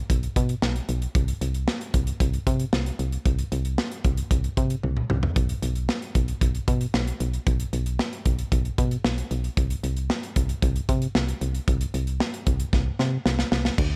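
A modern studio drum kit sits up front in this short synth-pop fragment, its punchy kick and medium-tuned snare set in a studio room with a mid-forward, rolled-off top. Crash cymbal, hi-hat and toms fill out the kit over a steady, straight 4/4 groove that feels driving and nocturnal. Alongside it, a solid FM bass, also up front, carries the low end with a round, digital tone, each note arriving with a fast attack and then decaying into a mellow body. Drum fills mark the flow at 4.8 seconds and again from 12.7 seconds, the second one carrying through to the close of the clip. The mix is dry and close, keeping both parts present and immediate.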